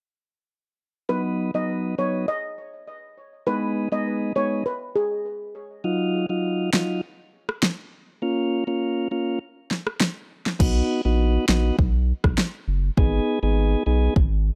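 This hypnotic, tough dancehall excerpt at 101 BPM opens at 1.1 seconds with a mellow, metallic steel pan carrying a brief melody, its shimmer trailed by tape echo, over a smooth, clean tonewheel organ played through a stopped rotary speaker. The pan, struck with soft rubber sticks, sounds as if captured in a boxy small room, while the organ holds the accompaniment through a chord cycle moving from B to Abm, Ebmadd9 and Bbm. At 6.7 seconds an electronic, layered deep house drum kit arrives up front, with a deep kick, fat snare, rim click and crash cymbal carrying a tape-warm grit. From 10.6 seconds a thick, saturated sine sub bass with a fast attack and sustained tone anchors the low end as the chords return to B and Abm. The whole recording is dry and gritty, with little reverb, and the parts sit close and present.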